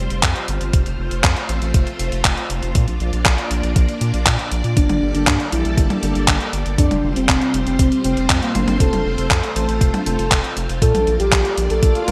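Italo disco at 119 BPM in F major, romantic and danceable, where lush vintage string-machine chords with ensemble chorus float over a deep, round analog bass, a thumpy electronic kick and a clean 12-bit drum machine of handclaps, hi-hat and toms in gated reverb, before a mellow octave-layered synth lead with vibrato, chorus and digital delay enters at 4.8 s, and an electronic swell arrives at 11.9 s, all in bright 1980s-style digital production with light ambience.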